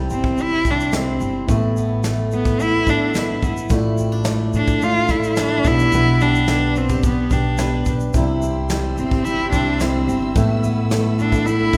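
Felt-muted upright piano, picked jumbo steel-string acoustic guitar and woody pizzicato upright bass open this tender, reflective acoustic pop excerpt in A minor at 108 BPM, with the mellow piano tucked in the background and its action noise audible. A rich, close cello carries the bowed melody up front with smooth vibrato, over a soft brush kit of punchy kick, shaker and snare, all set in a wet concert-hall reverb. At 8.1 s a distant, lush studio string section adds expressive sustained chords with portamento, high and soft behind the cello.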